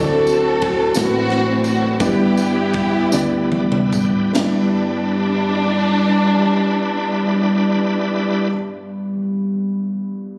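Soulful and jubilant, this slow gospel fragment in 6/8 slows down through its opening seconds as lush, up-front symphonic strings carry the melody with vibrato and portamento over a dark, intimate grand piano with audible action noise. A bright tonewheel organ holds shouting chords through a slow rotary speaker with key click, a round, punchy hollow-body electric bass anchors the low end, and a tight funk drum kit and jingly tambourine enter at 0.3 s, with drum and organ fills from 3.1 s before the kit and tambourine drop out. The piano plays alone after 8.5 s, and the mix sits in a light small-room ambience with club reverb and compression, as if captured on a phone.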